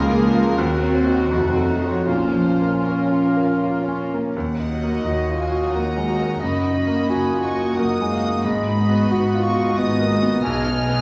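Moving in a rubato 3/4 at roughly 75-92 BPM, this brooding, tragic classical fragment cut from a longer piece opens in B-flat minor and shifts to E-flat minor at 4.3 s. A bright, up-front baby grand piano carries the melody with audible action noise and long sustain, joined by a floating, sul tasto violin section above it, while a second violin section, a vintage-toned clarinet, a dark, woody viola section, and background cellos and double basses fill out the harmony and bass. An airy silver flute and very quiet, mellow French horns appear only until 4.0 s, all set in a wet recital hall reverb.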